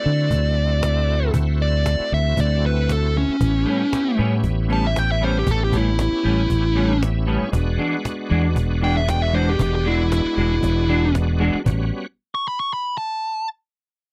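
A smooth, overdriven lead guitar sings the melody over a bright, shouting tonewheel organ with slow rotary speaker and chorus vibrato, joined at once by round, up-front fingered bass and snappy cajon in this swaggering, rollicking straight-eighth soul blues at 116 BPM in A mixolydian, with clean, chorused electric guitar stabs entering at 3.7 seconds, an organ fill at 6.5 seconds, and the band dropping out at 11.7 seconds on an A13 chord while the lead guitar plays on in a dry, close 1970s-style studio sound.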